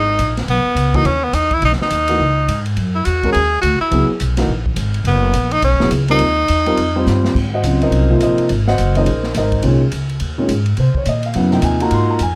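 A breathy tenor saxophone with vibrato and scooped notes carries the melody over woody pizzicato upright bass from the first moment of this searching, open modal jazz excerpt at 210 BPM in swung 4/4, joined by a dark, smooth small-room drum kit with a boomy kick from 0.2 s and a deep, long-sustaining concert grand piano from 0.9 s, before the saxophone stops at 7.2 s as a drum fill ushers the music from F# mixolydian into Ab mixolydian under light reverb.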